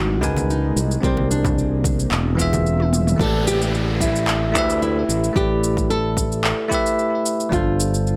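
A light reverb and digital ambience surround this relaxed sunset chillout excerpt at 111 BPM, where a fingerpicked, full-bodied nylon-string guitar carries the melody over a bell-like tine electric piano, both touched with digital delay, while a growly fingered electric bass with tube saturation sits up front. A punchy, overdriven electronic kick and a layered deep house kit with cabasa, handclaps and toms enter at 0.2 s alongside very quiet, hard-hand congas. A shimmering, ethereal pad holds sustained chords until 3.2 s, as a drum fill comes to a close, and from there the harmony moves to suspended chords as a quiet electronic downlifter plays beneath the groove.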